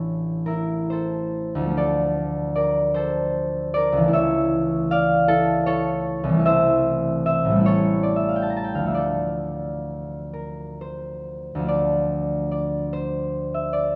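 A solo concert harp, thumb-plucked and ringing up front in a gentle, wistful D minor classical piece in a rubato 6/8 at about 43-53 BPM, moves from A through D minor to A7 and back to D minor, its warm tone wrapped in the generous reverb of a recital hall in this 14-second fragment of a longer work.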